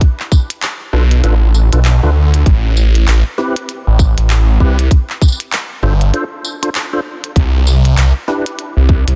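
A dense, heavily limited modern master with digital ambience frames this gritty, funky glitch hop excerpt in A minor at 98 BPM, swung on the sixteenths, where an up-front, tight layered electronic kick drives alongside a glitchy kit of tiny snare, clicky hats, handclaps and tambourine roughened by overdrive. From 0.9 seconds a thick, swirling detuned saw bass with tube saturation and phaser sits low and prominent, while a fat tonewheel organ with key click, chorus vibrato, slow rotary speaker, sidechain pumping and digital delay adds stabs until 8.5 seconds. The chords move through Bm7b5, Am9, G7sus4 and Cmaj7.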